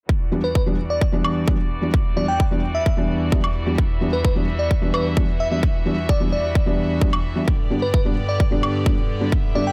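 The recording has a small room ambience around a short cut from a longer festival progressive house track, euphoric and anthemic at 130 BPM in straight 4/4 and E minor. A punchy, overdriven electronic kick drives it from 0.1 seconds, sitting up front, and a layered, overdriven woodblock joins at 1.2 seconds. A bright, earthy chamber string section holds bowed chords from E2 to E5, low-pass filtered and pumping with sidechain. A felt-muted upright piano plays mellow, intimate accompaniment up front, its thick felt and action noise audible as it also pumps. Above them a bell-like FM electric piano carries the melody between B4 and G5, sparkling and warbling through chorus and tape echo, while the harmony rests on Em7 before moving to G at 7.5 seconds.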